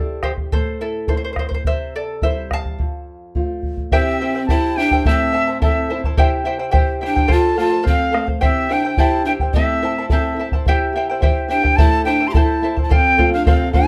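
A straight 2/4 pulse at 107 BPM drives this Andean folk ensemble piece, cut from a longer performance, with a mood that is both wistful and festive. The round, up-front bombo sets the beat from 0.2 seconds. Meanwhile a fingerpicked charango, its doubled strings shimmering, carries an opening solo over a small, boxy nylon-string guitar, both touched with plate reverb. At 3.9 seconds the cane quena takes the melody, reedy and airy with a straight tone and soft attack, distant in character yet placed up front, and also bathed in plate reverb. A bamboo pan flute joins at the same moment on a lower second line, expressive with vibrato and a crisp, chiffy attack. The harmony circles C, Am and F in a wet studio reverb, and the mix has the rough feel of a home demo.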